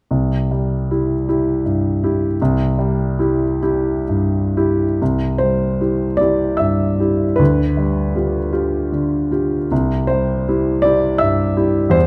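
Classical romantic nocturne for solo piano, serene and tender, moving in a slow, rubato 6/8 at roughly 40-56 beats per minute in C major. A clear grand piano carries the whole piece alone, sitting up front with a smooth, vintage character and a short sustain, spanning from C2 up to E5. The harmony rests on C, shifts to G7 over D at 7.4 seconds, and settles back onto C at 9.7 seconds, with a second section taking over at 5.0 seconds. Close, detailed microphones capture the instrument within a moderate recital hall reverb that lends gentle space around each note. Tuned slightly below standard pitch at A4 = 439 Hz, this brief passage is cut from a longer piece.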